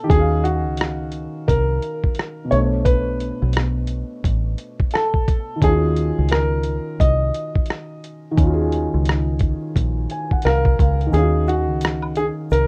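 A gritty, compressed sampler-style drum kit sits up front with a thumpy kick, hi-hat and rim click, driving this reflective, hazy lo-fi hip hop excerpt at 87 BPM with a swung 16th-note feel. A dark, round fingered electric bass anchors the Ebm9 and Bm9 harmony, while a woody, smooth upright piano carries the melody over a soft, thick-felt muted piano accompaniment with cassette-tape colour, all in a rough home-demo mix with light reverb. The felt piano adds a fill at 9.8 seconds, and from 11.1 seconds the kick drops out as a dry egg shaker and woodblock enter quietly in the background.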